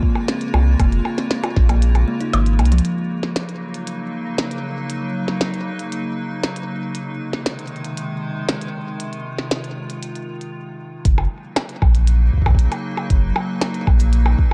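Glitchy and intricate, this excerpt of IDM at 117 BPM in Gb lydian floats an icy, crystalline glass pad with chorus, shimmer reverb and sidechain pumping over a deep electronic kick and a busy glitchy kit of clicky hats, a tiny snare, shaker and percussion blips. A woody kalimba plays arpeggios through delay at the start, joined by a round, up-front sub bass, while the chords move from Bbm7/F to Gb6 and Ab. The kick drops out ahead of a drum fill and returns with the bass at 11.1 seconds, following a brief stop, in a dark, lightly reverberant mix.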